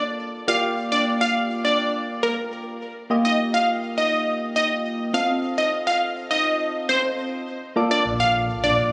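A punchy, catchy plucky unison lead with detuned sawtooth bite and delay carries the melody of this upbeat, summery dance-pop excerpt over soft, round electric-piano-like synth keys with chorus moving through Gm7, Ebadd9, F7 and Bbmaj7, while a deep sine sub bass with octave joins only at 8.1 s, the mix captured on a phone in the room with club reverb, moderate lush hall reverb and compression.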